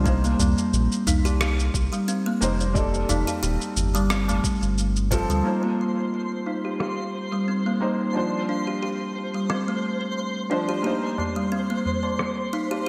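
A lightly swung 16th-note groove at 89 BPM in 4/4 carries this earthy, warm organic downtempo clip in C dorian, cut from a longer piece. A thumpy, overdriven electronic kick and a deep, dark analog bass with a fast attack anchor the opening, while a gritty, compressed electronic shaker and rim click and a high-tuned, ringing tabla add close acoustic detail. Up front, a woody kalimba with a thumbnail pluck spins arpeggios through a low-pass filter and delay, over a soft, boxy felt-muted upright piano whose audible action noise and 12-bit sampler grit give the chords of Cm7, F13 and G9sus4 an intimate, worn feel. Around 5.4 s the kick and bass drop away, and at 5.6 s a sparkling granular texture with an octave-up shimmer drifts in on a slow attack as a filter sweep moves across the kalimba and the harmony turns between Cm7 and Dm7. The tabla returns at 11.2 s, and the whole mix sits in a lush hall reverb with a bright, 1980s-style digital sheen.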